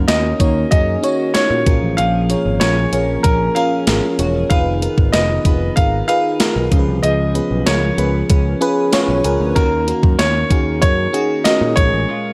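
A gated 80s digital drum machine drives a straight 4/4 at 95 BPM, its thumpy kick, hi-hat and gated reverb snare sitting up front with a tape-warm, large-room character, while a picked electric bass holds down a dark, round low end in this dramatic, nostalgic 1980s-style pop excerpt in Eb minor. A clear, polished concert grand piano carries the melody with delay, over a lush, dreamy FM electric piano with a soft pad layer bathed in chorus. A clean twelve-string electric guitar plays a compressed riff with analog chorus in the background as the chords move from Ebm7 through Bbm7, Fm7b5 and Db7 before a break at 12.1 seconds.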